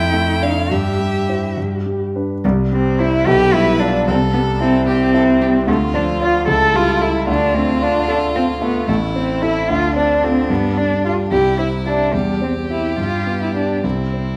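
Lilting in 6/8 with a flexible, rubato pulse, this quick classical-period movement for piano trio feels spirited and graceful. It is cut from a longer piece. The bowed violin carries the melody with a rich, smooth and even tone and vibrato, sitting noticeably softer in the balance than its partners. Beneath it, the cello shapes an expressive second line in a dark, close, up-front voice, colored by vibrato and sliding portamento. The concert grand piano gives a warm, intimate accompaniment with deep bass, long sustain and audible action noise. A brief opening phrase gives way at 2.4 s to a longer passage that settles firmly back home, and the whole trio rings in a wet recital hall reverb.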